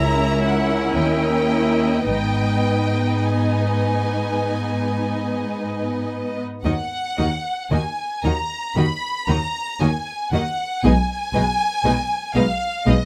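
Elegiac and melancholic, this slow romantic movement for string orchestra unfolds with rubato at 51-60 BPM in 4/4, shifting from G# minor to Eb minor at 6.6 s. An up-front, rich and expressive violin section sings the vibrato-laden melody above a focused second violin line and more distant violas with portamento, while lush cellos with a smooth top and soft-attack double basses share the bass. Close, detailed microphones and little reverb give the bowed ensemble an intimate studio presence in this fragment cut from a longer piece.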